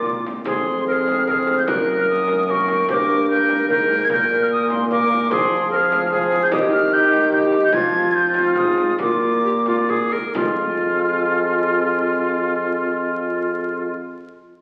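Courtly yet rustic, this renaissance-style consort dance in triple time is an excerpt from a longer piece, heard through the crackle of a very old 78 rpm record and the reverberant wash of a recital hall. A bright, airy concert flute carries the high melody with expressive vibrato, while an up-front tenor recorder with woody chiff adds a second line, a mellow bassoon supplies the accompaniment, and a present, vibrato-tinged trombone holds the bass. A deep, distant frame drum struck with hard hands sounds from 0.1 to 10.6 seconds, and the music slows between 7.1 and 10.4 seconds before a brief second section.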